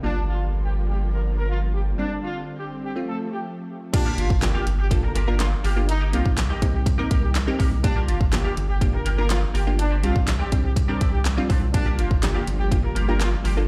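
Dance-pop in G minor at 123 BPM, bittersweet yet confident, this excerpt opens with a clear horn section carrying the melody over crisp, detuned wavetable chord stabs, a round analog bass up front and vintage chorused string-machine violas, all breathing with sidechain pumping while the horns also trail a delay. At 3.9 s the drop arrives as a punchy, layered pop drum kit with fat snare, handclaps and crash joins alongside a bright, twangy twelve-string electric guitar riff, while the violas fall away until 11.7 s. A large studio reverb gives the whole a big-room sheen over chords moving between Gm7, Csus2, F and Cm7.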